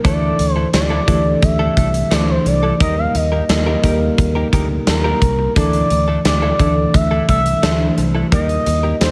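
A straight 4/4 pulse from a big, up-front rock drum kit drives this nostalgic, urgent 1980s-style pop excerpt, its punchy kick and medium-tuned snare bathed in gated reverb, while a dark, foam-muted picked bass rounds out the low end. A barky, worn tine electric piano with analog chorus moves between Dsus2 and Eb, and a direct-recorded clean electric guitar plays a compressed riff through chorus and delay, sitting lower in the mix than the other parts. Over the top, a smooth synth lead blending sawtooth and triangle tones, with a soft attack, vibrato, chorus and delay, carries the expressive melody from 0.1 seconds.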